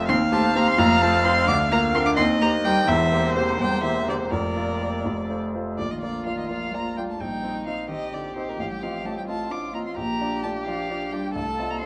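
Up front and present, a warm grand piano carries the accompaniment in this quick, spirited and graceful classical-period movement for piano quartet, its long sustain filling the texture from the deep bass up into the middle register. Over it, one muted violin sings the melody, close and veiled with vibrato and a dark, con sordino tone. A second muted violin adds a supporting line beneath, bowed with a soft attack and light vibrato. A muted cello plays its own second line in the background, shadowy and subdued. The music moves in a straight 6/8 at 86 beats per minute in Bb major, tuned slightly low at A4 = 439 Hz, with light reverb around the ensemble. Cut from a longer piece, the passage falls into two sections, the second beginning at 5.8 seconds and settling onto Bb harmony before turning toward F7 near the close at 11.9 seconds.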